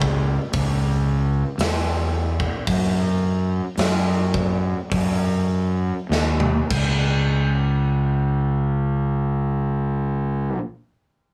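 A growly, overdriven fuzz bass and a punchy big rock kit with a bright stone-room sound open this ominous, sludgy stoner and doom metal fragment in straight 4/4 at 48-58 BPM, dragging slower until a drum fill at 6.1 seconds, after which the drums stop at 7.0 seconds and the up-front, dry bass carries on alone until 10.6 seconds.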